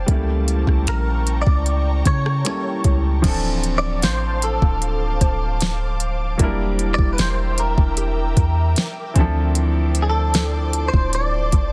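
A smooth, up-front electronic R&B drum kit leads this moody, sensual contemporary R&B excerpt at 76 BPM in D minor, pairing a soft kick and smooth hi-hats with a fat snare given soft clipping, plus finger snaps, rim clicks and a crash cymbal. Beneath it, a deep, boomy 808-style bass with a sine-like tone, a fast attack and decaying notes sits just as prominently. A clear, intimate grand piano supplies the accompaniment with audible action noise, while an ethereal, warbling pad holds sustained chords high above, softened by ensemble chorus and its own reverb. From 0.9 seconds a bright, twangy, direct-recorded clean electric guitar carries the melody, compressed and coloured by chorus and tape echo. Between 4.0 and 9.5 seconds a very quiet, woody FM synth pluck adds texture with chorus and phaser, as the harmony moves from A7b9 to Dm7 at 3.2 seconds, then through Em7b5 back to Dm7, all captured dry in a dense, heavily limited modern master.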